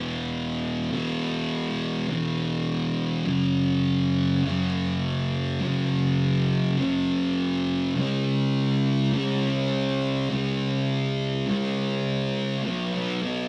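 A thick, double-tracked fuzz guitar plays alone and up front through this wistful, dreamy rock fragment at 102 BPM in a straight 4/4, its picked power chords moving from E5 to F#5 at 3.3 seconds, C#5 at 8.0 seconds and B5 at 12.7 seconds, all framed by a short booth ambience and the rough, tube-saturated grit of a rehearsal-room recording.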